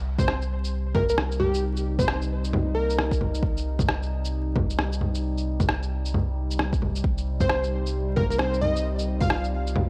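A round, soft dub sub bass opens this short cut from a longer future garage piece, sitting up front and pumping under the sidechain, before the drums and a plucky unison lead arrive at 0.2 seconds. At 133 BPM in 4/4 with a 61% swing on the 16ths, the groove pairs an overdriven, layered electronic kick with muffled, pitched-down electronic bongos, shaker and rim click that feel sampler-style and compressed, both touched by small room reverb. The catchy, full-bodied lead carries the melody through analog delay, playing in two stretches and returning at 7.4 seconds. Beneath it a warbling, nostalgic pad holds sustained chords on C minor, softened by chorus, phaser, built-in reverb and its own sidechain pumping. The whole has a rainy, wistful mood, wrapped in light digital ambience and the dry, gritty sound of a hardware recording with vinyl crackle.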